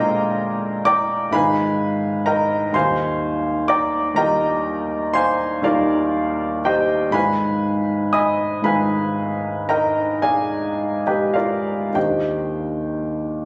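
A clear grand piano plays alone from the first moment, unfolding a serene, dreamy impressionist passage in 9/8 with free rubato, spanning Eb2 to Eb6. Its harmonies drift from a Bb13 through shaded Abm6 and Ebadd9 colours to settle on an Ebmaj9 near 11.9 seconds. Captured up front and intimate on a phone in a recital hall, the instrument's long sustain blooms into moderate reverb, and the noise of its action stays audible throughout this 13.5-second fragment of a longer piece.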